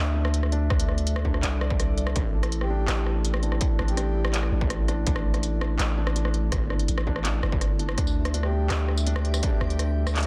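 Half-time drum and bass at 165 BPM, dark and spacious, where a deep, mellow 808-style bass sits up front beneath a moody, detuned analog pad with sampler grit and sidechain pumping, soft felt-muted upright piano arpeggios with tape echo, an industrial drum kit of handclaps, smooth hi-hat, rim click and tambourine, and a distorted electronic kick, while a breathy flute-like synth lead drifts in at 2.6 seconds and a bright, reversed granular texture swells in at 9.0 seconds within a dense, heavily limited modern master.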